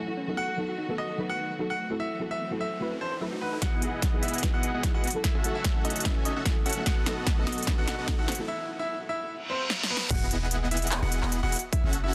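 A bright, intimate baby grand piano carries the melody with audible action noise and dub echo, pumping against the sidechain over a bright, lush future bass groove at 148 BPM in E major, felt in half-time with a light swing. A soft, round chorused pluck, a tine-like FM pluck playing arpeggios under a filter sweep, and a background of lush, bowed symphonic strings open the passage, before a huge, detuned supersaw riff, a deep, boomy 808-style bass, a punchy overdriven kick and a dance kit with crisp hats, snare, claps and crash arrive at 3.6 seconds. After a build-up and a short break capped by a reverse cymbal, the drop lands at 10.1 seconds with a very quiet impact and sub drop, all in a dense, heavily limited modern master with light digital reverb.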